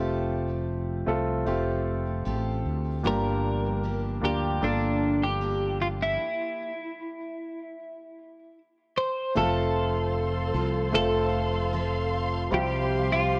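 A bright, twangy twelve-string electric guitar carries the melody in this heartfelt, hopeful pop ballad, entering up front at 3.1 s with a clean, compressed tone. Beneath it, a polished grand piano plays the accompaniment while a full-bodied jumbo acoustic guitar picks arpeggios through a digital delay, and a round, dark fretless electric bass sits close and direct at the bottom. The harmony moves from Fadd9 to Gm7 before a stop at 6.2 s leaves a pause until 9.4 s, when the music resumes on F and heads toward Csus4. At that point a lush studio string section joins with bowed, sustained chords, adding expressive vibrato, portamento and a smooth top. The whole mix carries a worn, warbling old-cassette character with gentle pitch drift, set in light reverb and a small room ambience, and the passage is cut from a longer piece.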